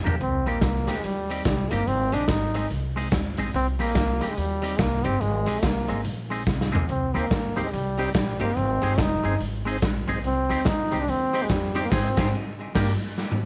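Driving and energetic, this swung ska passage, cut from a longer piece, puts a smooth, vibrato-laden trombone melody up front over a gritty, saturated garage drum kit with a punchy kick and drum fills around 6.5 seconds. A woody, thumpy pizzicato upright bass and a clean, compressed hollow-body electric guitar treated with phaser and tape echo carry the accompaniment. A fat, lightly overdriven tonewheel organ with key click and slow rotary speaker adds a brief stab at the very start and returns with stabs in the background from 7.1 seconds, before a band accent at 11.9 seconds closes the section.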